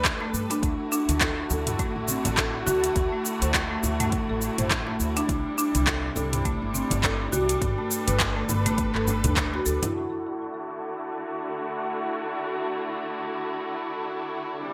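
Organic downtempo at 103 BPM in D mixolydian, peaceful and warm, with a swung sixteenth-note feel over chords moving through G, D, C and G. A lush, bowed symphonic string section with vibrato sits up front holding sustained chords with sidechain pumping, while a woody padauk marimba plays delayed arpeggios, a thumpy pizzicato upright bass carries the low end, an overdriven deep house kit with metallic hats, handclaps, shaker and toms joins a deep electronic kick, and very quiet, close and dry bongos and congas add color. The sound is bright 1980s-style digital production in a plate reverb; by 9.9 seconds the other parts have dropped away, leaving the strings alone under a filter sweep until 14.7 seconds.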